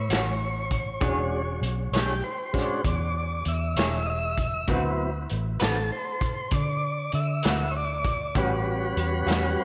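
A smooth tonewheel organ leads this swaggering, gritty slow blues in 12/8 at 65 BPM, its sustained chords turning through a slow rotary speaker over A13, E13 and D13 in A mixolydian. A dark, foam-muted fingered bass and a punchy vintage kit with a rolled-off top sit up front beside it, while a slightly broken-up, lo-fi electric guitar with tremolo and slapback echo stays in the background. A lush hall reverb gives this short excerpt, cut from a longer piece, a big arena sound.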